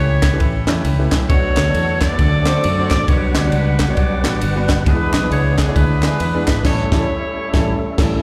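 A bright, tight saxophone section carries the melody with vintage vibrato and a soft attack, set off by slapback and tape echo, over a warm concert grand piano with deep bass and long sustain in this hopeful, reverent uptempo gospel excerpt at 135 BPM with a swung feel. A round, foam-muted fingered electric bass and a punchy, up-front fusion drum kit with a high-tuned snare and dark cymbals drive the groove, while group handclaps sit close and dry in the background until 6.6 s. A fat, lightly overdriven tonewheel organ with key click and slow rotary speaker joins at 1.3 s, and the band hits an accent from 6.6 s, all heard as a live gig through a club PA in a small room.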